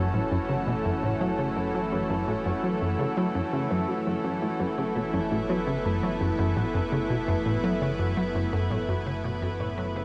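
Ambient, sequencer-driven space music at 84 BPM in F# minor, hypnotic and mysterious, resting on a single F#m7 chord. A thick, detuned unison pad holds sustained chords up front with chorus, while a punchy, wave-folded analog bass plays a riff through chorus and tape echo. A very quiet, ring-modulated pluck traces arpeggios, and a dark, evolving drone sits low in the background, fading in across the clip; the dreamy mix is soaked in a lush hall reverb and fades out from 7.5 seconds.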